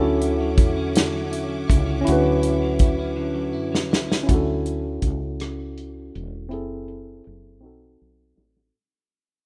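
A slow, straight six-eight R&B groove rides on a soul drum kit of hi-hat, kick, rim click and medium-tuned snare, sounding natural and up front in a small room, with a tight kick and drum fills closing each half of this short cut from a longer piece. A woody fretless bass sits underneath, dark, round and direct, while a worn, slightly out-of-tune tine electric piano carries the accompaniment in a mellow tone, heard as if through its built-in speakers. A clean, picked electric guitar adds a quiet second line, and a lush, bright string section holds bowed sustained chords with intense vibrato until it drops out at 4.2 seconds, the guitar following at 4.9 seconds. From 4.3 seconds the music fades out under a filter sweep as the harmony moves from a Dmaj9 through F#m7b5 to B7b9. The rough home-demo mix, dulled by a low-pass filter, gives the whole an intimate, tender feel.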